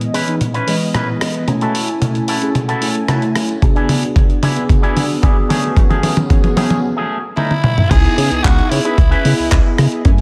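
A straight 4/4 groove at 112 BPM drives this groovy, cosmic nu-disco excerpt in C# minor, built on a gritty, compressed sampler-style soul drum kit of hi-hat, rim click, handclaps, toms and crash cymbal, with drum fills running through the build-up. A thumpy electronic kick drum enters at 3.6 seconds and sits up front alongside the kit, both carrying a small-room character. Underneath, a dark, glossy chorused synth bass with a plucky pulse-and-sawtooth tone sits in the background, while mellow synth brass, round and full-bodied with vibrato and tape echo, spreads chords that move through C#m7, F#m7, E7 and Amaj7. A bright, twangy electric guitar with an envelope filter picks a clean riff above the bass. During a short break, a raspy, edgy tenor saxophone cuts in at 7.4 seconds just before the drop at 7.9 seconds, all set in a dreamy mix soaked in plate reverb.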